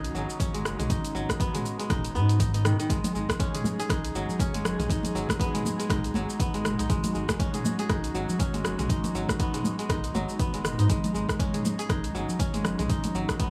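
A swung 120 BPM groove in 4/4 drives this spiritual, earthy afro house excerpt in G# minor pentatonic. The deep house kit lays down hi-hat, rim click, shaker and toms from the start, and a punchy, layered electronic kick joins at 0.4 seconds. Soft-handed congas with a thick, damped skin enter at 3.0 seconds, sitting in the background with a dub echo trailing them. Up front, a bright, crisp kora rings out fingerpicked arpeggios through its own dub echo, while a round, nasal analog bass with a fast attack holds down the low end. Behind them, a dark string section bowed sul tasto with light vibrato sustains soft-edged chords moving from C#sus2 to G#m7, and sidechain pumping breathes through the strings, kora and bass. The echo-heavy mix carries light reverb and a small room ambience.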